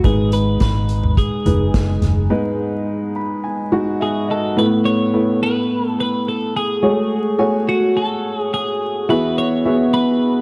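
Piano-driven pop at 106 BPM in 4/4, this short excerpt carries an earnest, bittersweet mood under a dark production with light reverb, a small room ambience and a layer of vinyl crackle. An upright piano, woody, slightly detuned and up front with long sustain, plays accompaniment from start to finish, while a bright, twangy twelve-string electric guitar, clean, picked and compressed, carries the melody from 0.1 seconds. A vintage foam-muted fingered electric bass, round and punchy, and an acoustic drum kit played with bundle sticks, airy and polished with a medium-tuned snare and punchy kick, support the opening bars before dropping out around 2.3 seconds for a break. During that break the piano plays a fill from 2.9 seconds, leading into a new section at 4.6 seconds. The harmony moves from G#m to Asus2, F#madd9 and Eadd9, giving the passage its wistful lift.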